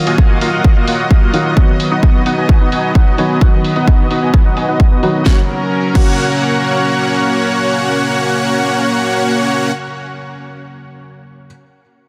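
A huge, detuned supersaw carries the riff up front in this euphoric, triumphant festival progressive house excerpt, its thick sawtooth stack compressed hard, filtered with a sweep through the opening 5.3 seconds and trailed by tape echo as it pumps against the kick. Beneath it, a lush, warbling pad holds sustained chords with a vintage, chorused shimmer and a slow attack. A felt-muted upright piano adds a soft, intimate accompaniment, with audible action noise and its own tape echo, and it plays on until 11.5 seconds, outlasting the other parts. The punchy, overdriven electronic kick sits firmly up front, joined by a house kit whose cracking snare, hi-hat and crash are filtered and sound re-recorded in a large room, before both drop out at 6.1 seconds. The mix is dense and heavily limited, with light reverb and a steady sidechain pump that breathes through the piano, pad and supersaw.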